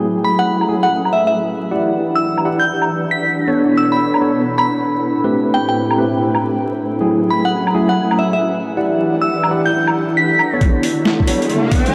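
A dreamy, reverb-drenched mix with a haze of vinyl crackle opens this late-night, soulful slice of two-step UK garage, where a silky, pumping string machine holds sustained chords and a lo-fi, nostalgic tape-like pad adds texture in the background beneath bright electric piano stabs and an up-front, crystalline FM bell melody with tremolo and delay. A gritty, pitched-down sampler-style kit of hi-hat, high-tuned snare and woodblock swings along from 0.6 seconds. At 10.6 seconds the build-up begins, bringing in a thumpy overdriven kick and a deep, dark wobble bass, while an electronic riser enters at 10.8 seconds before the cut.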